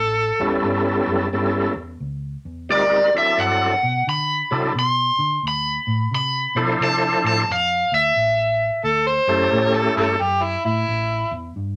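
A laid-back swung 4/4 blues at 88 BPM moves over A7, D7 and Dm7 in this excerpt. A dark, round, foam-muted electric bass holds the bottom, while a thick, overdriven tonewheel organ with key click, chorus vibrato and a slow rotary speaker fills in the chords. An up-front, bright, picked semi-hollow guitar carries the lead from 2.7 to 8.8 seconds, and an amplified harmonica, gritty with scooped notes and tongue slaps, opens briefly before taking over the line at 8.8 seconds, all in a moderate studio reverb.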